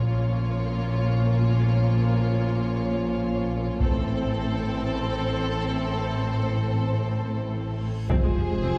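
Cinematic, epic orchestral film score in free time, dark and relentless, cut from a longer piece that spends its first 8.1 seconds building up. Violins carry the melody high between C5 and Db5 with a woody, lush vibrato, while a second, focused violin section with a smooth top holds a line beneath, and close, bowed violas fill in the accompaniment. Mellow French horns sustain chords throughout, and the low end rests on a rich, focused double bass section joined by a distant cello section sitting in the background. Heavy-stick taiko drums with a vintage, band-limited sound strike from 3.8 to 4.8 seconds as the harmony shifts from Bb minor to A minor. A huge, dark reverse cymbal rises at 7.8 seconds into an impact at 8.1 seconds, where the taiko returns, a very quiet, tight trombone section adds sustained chords, and the harmony lands on F minor. The ensemble is heard from further back in a wet scoring-stage reverb that gives the whole passage a spacious depth.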